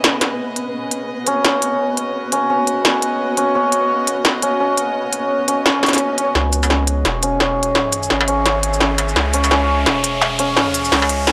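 Cinematic and tense, this half-time drum and bass excerpt in C# minor at 171 BPM opens with distant, bowed strings and a flickering, grainy texture beneath a clanging, up-front industrial drum kit of crisp hats, shaker and struck metal, joined at 1.3 seconds by a bright, hammered santur arpeggiating through tape echo. A background swell rises from 5.8 seconds, and at 6.4 seconds the texture falls away as a thick, saturated sub bass enters, while a riser, a drum fill and filter sweeps on the strings and santur drive a build-up, all within a dry, gritty recording touched by light digital ambience.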